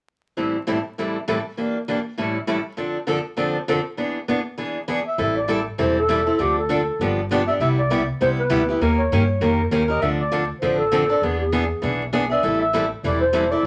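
A bright, boxy picked steel-string acoustic guitar opens this fiery, swinging jazz manouche excerpt up front with audible finger squeak, before a breathy, whispered clarinet with subtone and vibrato takes the melody at 5.1 seconds alongside a woody, thumpy pizzicato upright bass on gut strings, all set in a moderate studio reverb beneath a layer of vinyl crackle as the chords move from Am7 through Dm7, G7, Cmaj7 and D#7 to E7.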